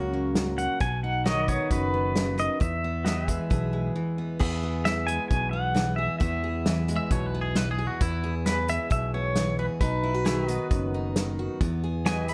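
A moderate large-studio reverb gives this sunny, nostalgic honky-tonk and classic country excerpt a roomy glow. A picked dreadnought acoustic guitar sits up front over a direct fingered electric bass and an acoustic drum kit played with bundle sticks, its tight kick and medium-tuned snare joined by hi-hat and crash cymbal. A bright, compressed pedal steel carries the melody with fingerpicked slide lines, volume swells and plate reverb, and a second, mellower pedal steel holds sustained chords beneath it. After a brief break at 4.0 seconds, a clean, twangy electric guitar adds a short second line with tape echo at 7.0 seconds.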